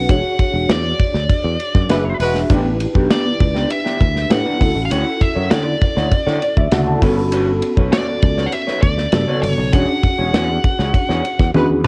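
A nasal, overdriven lead guitar with a parked wah carries the melody in this short cut from a longer piece of polished 1980s jazz-funk pop, its dark, picked tone softened by a cassette-tape haze. Beneath it, a mellow tine electric piano plays through its built-in speakers with an ensemble chorus and steps forward for a fill at 6.1 seconds. A growly, punchy fretless bass sustains low, and an up-front studio drum kit with a tight kick and a rolled-off top keeps a straight 100 BPM pulse in 4/4 on hi-hat, kick, snare, ride and toms. A present, jazz-style horn section adds brief second-line touches, and from 2.5 seconds a slightly broken-up, fingered electric guitar plays a riff dressed in lush chorus. The harmony moves from E13 through A9sus4, Dmaj9 and Gmaj9#11 before returning to E13, with band accents at the start and close and a drum fill in the final moments. Light small-room reverb gives this home cassette recording a nocturnal, bittersweet mood.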